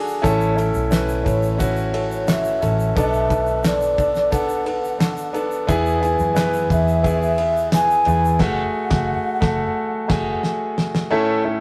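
A rough rehearsal-room sound with tube saturation and a moderate stone room reverb frames this dramatic, driving stretch of piano-driven pop in F# minor, moving at 88 BPM in a straight 4/4. A warm concert grand piano sits up front with deep bass, long sustain and audible action noise, carrying the accompaniment through the chords A, Bm7, E and F#madd9. Beneath it, a vintage muted fingered electric bass gives a dark, round, punchy foam-muted tone, while a damped 70s drum kit brings a fat snare, tight kick, dark cymbals and handclaps, and a grainy egg shaker stays in the background. At 1.3 seconds a breathy, hollow alto ocarina takes the melody with clay-toned vibrato and tongued notes. From 8.4 seconds the band hits an accent, the shaker drops out, and the piano adds a fill before a drum fill closes this excerpt, which is cut from a longer piece.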